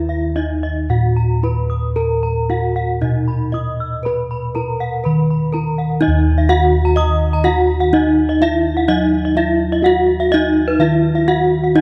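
Darkly produced with light reverb, this brilliant, shimmering cut from a longer Balinese gamelan piece sets a close-miked, dry bronze metallophone melody over round, mellow bossed gongs carrying the bass up front, while a second, airy metallophone adds high arpeggios with paired-tuning beats from 0.1 seconds, and the music moves into a new section at 6.0 seconds.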